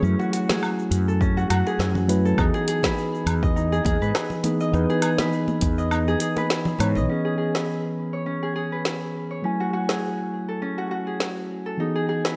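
Light reverb gives this sunny, warm sunset chillout excerpt a soft glow. Up front, a mellow, clean tine electric piano carries the chords in E major at 102 BPM under a filter sweep, while digital delay trails both the piano and a ringing, fingerpicked Celtic harp playing low-passed arpeggios. A round, punchy fretless bass, background bongos and congas, and a deep house kit of woody snare, dark hi-hats, shaker and woodblock swing on the sixteenths, with a layered electronic kick present from 1.2 to 5.8 s, and at 7.1 s the bass and hand percussion stop, leaving keys, harp and kit over the closing chords.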